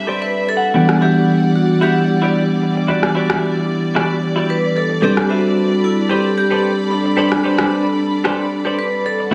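A sleek, groovy nu-disco excerpt built on a mellow tine electric piano accompaniment under dark, softly bowed studio strings with light vibrato, while a bright, twangy clean electric guitar, treated with lush chorus and dub echo, opens with a fill before settling into its riff, a ringing vibraphone carries the melody with fast motor vibrato, and an electronic rim click enters at 0.9 seconds within a small, lightly reverberant room, all moving between Am11 and Em9 chords.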